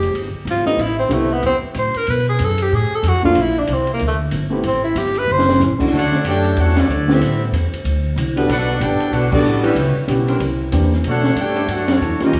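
A bright, up-front tenor saxophone opens this joyful, energetic big band swing passage at 187 BPM, its soft-attack jazz solo colored by vibrato over a woody, thumpy upright bass played pizzicato on gut strings and an open jazz drum kit with dark cymbals, a high-tuned snare and a boomy kick. A natural-sounding baby grand piano joins at 0.7 seconds with accompaniment, and a drum fill at 5.3 seconds closes the saxophone's solo. At 5.9 seconds the music settles into D major as the full band arrives: a clear, vintage-toned trumpet section takes the melody while a trombone section carries a second line and a mellow, smooth-topped saxophone section holds sustained chords, both sitting in the background. Band accents punctuate this stretch, and the harmony moves through rich colors such as Dmaj7, Gmaj9 and Bm9. The moderate concert hall reverb gives the band space, while the drums keep a small-room closeness, and the passage is cut from a longer piece.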